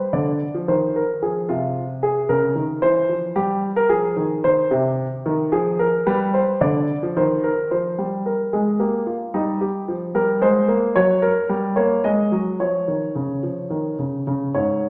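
A dark baby grand piano opens this short passage alone, spinning a serious, contemplative baroque-style two-part invention in F minor. It moves at a steady 111 BPM in 3/4 with a straight feel, its lines ranging from Ab2 up to Eb5. The harmony circles through minor chords and dominant sevenths before settling into Db major at 11.0 seconds, passing through Gb and a diminished chord on the way to a closing Db. The piano's tone is mellow and natural, and it sits up front in the mix. A recital hall reverb adds a wet, lingering bloom around each phrase. The clip is taken from a longer piece and ends at 14.9 seconds.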